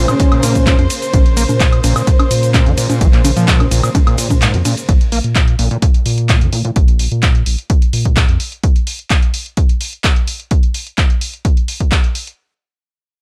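Acid house at 128 BPM with a trippy, playful mood, built on a punchy, up-front electronic kick that drops out from 4.4 to 4.9 s, an analog drum machine ticking through cabasa, congas, handclaps, hi-hat, ride cymbal and woodblock, a squelchy, gritty acid bass riff with distortion, chorus, delay and a filter sweep from 4.9 s, a round, deep analog bass line, a brief breathy flute-like synth lead touch with tape echo sitting in the background, and dark, sul tasto bowed string chords that pump with the sidechain over Bbm before the music shifts to Bb5 at 4.9 s, all in a light reverb.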